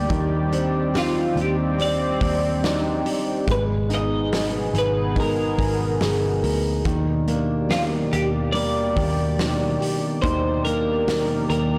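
This tender, emotional pop ballad opens at once with a dark, mellow grand piano, a sweeping sawtooth pad with a slow attack and chorus, fingerpicked steel-string acoustic guitar arpeggios with audible finger squeak, and a round, foam-muted vintage electric bass, all in Eb major at a slow 71 BPM in a straight 4/4. A huge arena drum kit joins at 0.1 seconds with a punchy kick, fat snare and hi-hat ringing in a big, natural room. At 1.0 seconds a bright, twangy twelve-string electric guitar takes the melody, its clean, compressed tone shimmering through analog chorus. The harmony moves from Cmadd9/Eb to Abmadd9 at 3.5 seconds and settles on Ebmaj7 at 6.9 seconds, with the evolving, detuned pad sustaining chords alongside the very quiet dreadnought guitar. Light reverb and small room ambience surround a blown-out, overdriven recording, giving this cut from a longer piece a saturated sheen.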